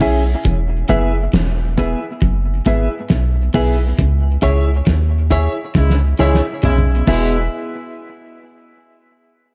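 Dub reggae at a slow 68 BPM in E major, this hazy, spacious passage is cut from a longer piece and sits in a dark, warm production with light reverb. A deep, round sub bass sits up front beside a cloth-damped, thuddy drum kit with a fat snare, tight kick and dark cymbals, its sound muffled, gritty and rolled-off on top. A clean, fingered electric guitar and a clear, woody upright piano with a slightly detuned, worn character play accompaniment and stabs through tape echo, while a second guitar at the edge of break-up carries a low riff in the background, coloured by lush chorus and echo. The harmony moves from E to C#m and back, and from 4.0 seconds the band hits accents together. At 5.8 seconds a distant horn section with light vibrato enters on a second line as the drums play a fill.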